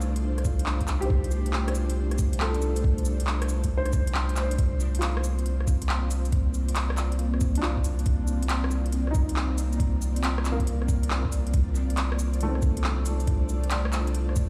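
A ghostly, melancholic future garage excerpt opens with a felt-muted upright piano, its soft, intimate tone carrying audible action noise and a digital delay, over an ethereal pad built from detuned sawtooth and triangle voices with ensemble chorus and its own reverb. A deep, round dub sub bass holds a low C up front, and together with the piano and pad it breathes with sidechain pumping. An organic electronic kit of crisp hi-hats, cabasa, handclaps and rim clicks sets a swung 138 BPM groove in 4/4, joined at 0.4 seconds by a soft, tape-colored kick that drops out briefly between 4.1 and 4.6 seconds. The harmony drifts from Dm7/C to Cm11 and back to Dm7/C, the pad swelling slowly into each chord with a long release. Vinyl crackle and a large studio reverb give the whole a distant, haunted air, as if played on a big sound system in a bare room.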